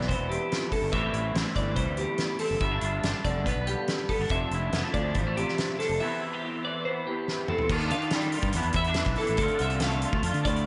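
A dreamy mix soaked in plate reverb, with a soft, rolled-off top end, carries this bright, wistful math rock and midwest emo excerpt at 142 BPM in straight 4/4 and C major. An up-front electric guitar through a small old amp picks twangy, slightly broken-up chords thickened by ensemble chorus, while a clean, compressed twelve-string electric guitar spins high arpeggios over a growly, fuzz-overdriven fingered bass and a loose, roomy indie kit with dark cymbals, a fat snare and a tight kick. After a drum fill at 7.3 s, the progression moves at 7.7 s from its cycle of Cmaj7/E, Am7, G9 and F6 into Ebmaj9, Asus24 and Dm7.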